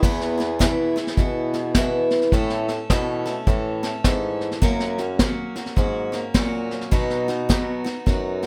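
From the first beat at 0.0 seconds, a picked parlour steel-string guitar, a mellow bassoon and a vintage brush kit all sound together in this down-home, heartfelt stretch of honky-tonk and classic country, cut from a longer piece. The tempo sits at 104 BPM in 4/4 with a swung eighth-note feel, and the harmony moves through E, A, F# and B in E major. The bright, boxy acoustic guitar carries the accompaniment up front, while the bassoon takes the bass role in a classical style, low and close with a light vibrato. Brushes on the kit sit most prominent in the mix, with a high-tuned snare, a tight kick, hi-hat and crash heard from a distant, roomy small space with a rolled-off top. A light reverb gives the whole 8.5-second passage a gentle, old-time glow.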